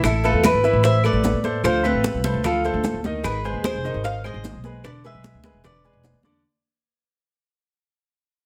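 Danceable and nostalgic, this brief Cuban son and guajira fragment in A harmonic minor moves at 150 BPM as an up-front, metallic Cuban tres carries the melody over a fingerpicked nylon-string guitar second line, clear grand piano arpeggios entering at 0.2 seconds, a thumpy pizzicato upright bass, background ringing congas, woody claves and grainy maracas, plus very quiet tight bongos, all fading out across its 6.4 seconds in a moderate studio reverb.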